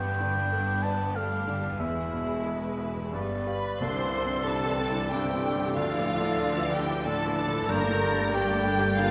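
A rubato 3/4 at 93 BPM opens this hopeful, moving cinematic passage, cut from a longer piece, with a lush, vibrato-laden violin section carrying the melody over a second violin line, a smooth solo oboe, a soft felt-muted upright piano with audible action noise, distant viola with portamento, bright ringing harp arpeggios, and bowed cello and double bass sections beneath. At 3.8 s the music settles into C mixolydian as a pure, tongued concert flute, a very quiet mellow clarinet and a punchy, tight French horn section holding sustained chords join, with soft-mallet timpani adding round calf-head strokes. Scoring stage reverb gives the ensemble a generous sense of space.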